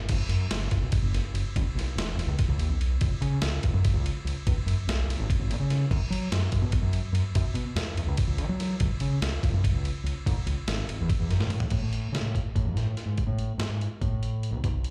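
Heard as a live gig through the venue's PA, this short cut from a longer piece carries a light touch of club reverb. It is intricate, bright math rock with a midwest emo lean, running at 289 BPM counted in eighths in a straight 7/8, in A lydian with tuning set at A4 = 441 Hz. A growling fingered electric bass sits up front for the whole piece, amped and overdriven yet still warm, ranging from E1 to F#3. Beside it, a gritty, compressed, sampler-style boom bap drum kit, re-recorded in a large room, brings a thumpy kick, a high-tuned snare, hi-hat, ride and crash cymbals, and toms. A drum fill at 11.4 seconds leads into a new section at 11.7 seconds, which carries on to the close of the cut.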